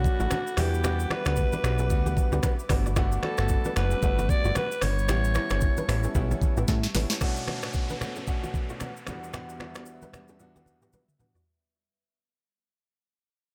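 Afrobeats with a hypnotic, mellow swing: a breathy, raspy alto saxophone sings the melody over a grand piano, a glassy FM pad, a plucky analog bass, an electronic afro-pop drum kit with a knocking kick and metallic hats, soft-handed congas and a fingerpicked kora riff with delay, until the sax drops out at 6.4 seconds and a downlifter rides a fade-out from 7.2 seconds in this section cut from a longer piece.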